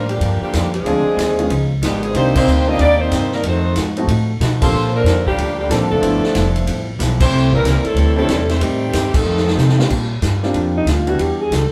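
Big band swing at a brisk 186 BPM, this brassy, swinging passage opens with a bright, vibrato-laden saxophone section carrying the melody up front while a mellow, tight trombone section supports it with a second line in the background. Underneath, a woody, thumpy upright bass on gut strings drives the low end prominently, joined by a dark, clean hollow-body electric guitar tucked behind the band and a clear upright piano that enters at 0.9 seconds. The acoustic drum kit, with its punchy kick and medium-tuned snare, swings across ride, hi-hat and crash, as the full band hits accents through the first section before a drum fill sets up the change. When the horn sections stop around 9.8 seconds, a breathy, subtoned alto saxophone steps forward for a short solo from 10.8 seconds over chords moving from Bb6 to Em9. The whole group sounds like it is playing live in one room, wrapped in a fairly wet studio reverb, and the passage is cut from a longer piece.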